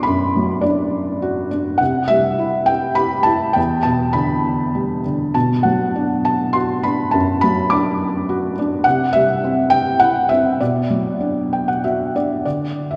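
Bittersweet and brooding, this lyrical classical solo piano piece moves in a three-beat metre with a freely breathing rubato feel. A felt-muted upright piano plays alone throughout, spanning E2 to D6 with a soft, mellow, intimate tone in which the mechanical action noise is plainly audible. The piano sits up front, while the church or concert hall around it adds a wet reverb whose 3.4-second tail lingers behind each phrase. The harmony moves from Bm through C and Em7, settles back on Bm, then turns to C once more before returning to Bm. A short piano fill at 11.2 seconds rounds off the passage, which is cut from a longer piece and ends at 13.0 seconds.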